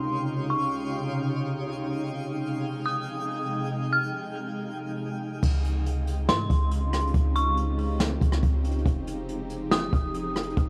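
Atmospheric cloud-rap hip hop at 140 BPM in a half-time feel, melancholic and hazy, this short excerpt opens on an eerie, inharmonic synth bell melody with chorus and tape echo floating over an ethereal, detuned pad that pumps against the sidechain, while a twinkling granular shimmer sparkles above through a filter sweep, all drifting between Dbmaj9#11 and Fm9. At 5.4 seconds the granular texture stops and a deep, boomy, clean 808-style bass enters alongside an up-front brushed jazz kit with dark cymbals, rim clicks and a rolled-off top. Light reverb and a small room ambience keep the haze close and intimate.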